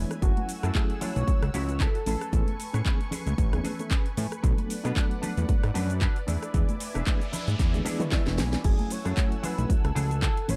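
A reedy electric piano with fast tremolo, digital delay and sidechain pumping, a warbling, chorused pad and a fat, saturated analog bass open this sensual, sleek nu-disco excerpt in F# minor at 114 BPM, soon joined by a punchy, up-front electronic kick, a house kit with cracking snare and metallic hats, ringing shaker and congas in the background, a twangy, envelope-filtered electric guitar riff, and a bold, nasal unison lead heard until 2.8 seconds and again from 8.7 seconds. Clean guitar fills, a drum fill and a faint noise sweep from 6.8 seconds appear as the chords move from F#m9 through Amaj9, Bm7 and E7 back to F#m9 in a dark, dry production.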